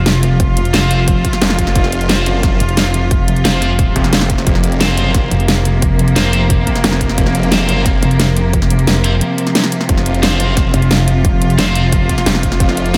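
A snarling, detuned saw bass growls up front from 1.4 seconds, distorted and pumping alongside a pulsing, mellow wobble bass, a clear bowed string section holding sustained chords, a huge-snared dubstep kit with a punchy electronic kick, and bright, scooped high-gain guitar stabs trailing tape echo, all in a dark, mechanical 177 BPM technical drum and bass excerpt drenched in dreamy hall reverb with a brief break at 9.2 seconds.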